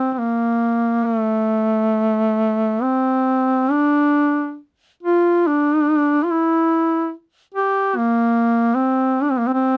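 Close, detailed miking with light reverb puts a solo duduk up front in this short cut from a longer Caucasian folk piece, its warm, vibrato-laden tone carrying a solemn, mournful line in a free, rubato three-beat feel from 0.0 to 9.8 seconds.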